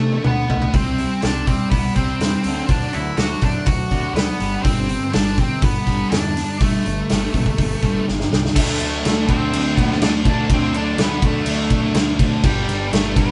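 A straight 4/4 pulse drives this angsty, brooding alternative rock excerpt, built on the quiet-loud style and carried by a loose, roomy acoustic drum kit that sits up front with a punchy kick, a medium-tuned snare, crash, hi-hat and toms, and drum fills that open the clip and lead into its second half. A dark octave-fuzz lead guitar, dressed in distortion and tape echo, carries the melody throughout. Beneath it, a growling, round overdriven bass anchors the low end while a pair of thick fuzz guitars grind out the riff in the background, one of them bright, the other mellower and present from 0.7 seconds. In the opening section a clean, twangy electric guitar picks compressed arpeggios in the background, and the first fuzz guitar drops out until 4.6 seconds. At 8.6 seconds the second section begins: a double-tracked, very quiet distorted guitar adds its own riff, and a lush, woody string section adds warm, bowed sustained chords with vibrato, all in a moderate studio ambience with a rolled-off top.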